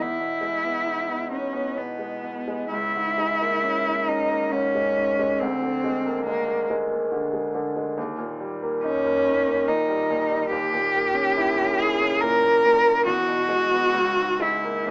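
In a flexible, rubato triple metre, this romantic classical duo for cello and grand piano unfolds with an elegiac, yearning mood, in a brief passage cut from a longer piece. The bowed cello carries the melody from the first moment to 14.9 seconds, played by a single player with a rich, smooth, even tone, vibrato and a smooth top, sitting up front in the mix. Beneath it, the concert grand piano supplies a polished, present accompaniment, with a clear tone, deep bass and a long sustain that lets the harmony ring. The chords drift from Emaj7 through darker altered colours such as D#7b9 before settling briefly on E and turning away again. A moderate large-studio reverb surrounds both instruments, though the overall sound has the character of a small speaker.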